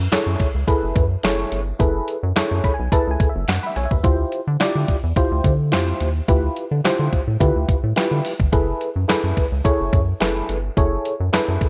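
Early-eighties boogie funk with a danceable, funky strut, cut from a longer piece, where a rubbery, hollow square-wave bass bounces low beneath a glassy, bell-like FM electric piano treated with chorus. A clean 12-bit drum machine sits up front with a thumpy kick, medium-tuned snare, hi-hat and handclaps bathed in gated reverb, while the overall sound stays dry and close. The chords move from F#m11 to Dm11 at 4.0 seconds and back at 8.5 seconds, with the electric piano slipping in a short fill at 2.4 seconds.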